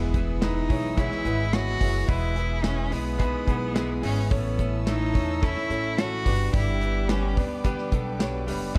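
A very quiet electronic impact opens this anthemic, uplifting piano-driven pop excerpt at 108 BPM in 4/4, where an up-front bowed cello with vibrato carries the melody over a clear grand piano with audible action noise, a thumpy pizzicato upright bass, a clean, compressed twelve-string electric guitar riff in the background, a distant, dark French horn section on a second line and lush, hushed string chords, while a modern studio drum kit of tight kick, medium-tuned snare, hi-hat and handclaps joins at 0.1 s, the whole heard in small room ambience as the harmony moves from E to A to G.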